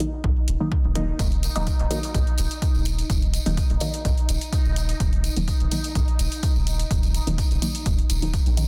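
A dense, heavily limited modern master in digital ambience carries this nocturnal, hazy dub techno cut, a straight 126 BPM groove in Eb minor resting on an Ebm chord. Muted, detuned sawtooth chord stabs with a mellow filter pluck play throughout, treated with chorus, phaser, dub echo, sidechain pumping and a filter sweep across the full 8.7 seconds. A bubbling, resonant stepped-filter texture drifts alongside them and an overdriven, layered hi-hat ticks from the start, while a punchy, up-front analog kick and a round, soft sub bass enter at 0.2 seconds, and a jingly acoustic tambourine, distant in a large room, joins at 1.2 seconds.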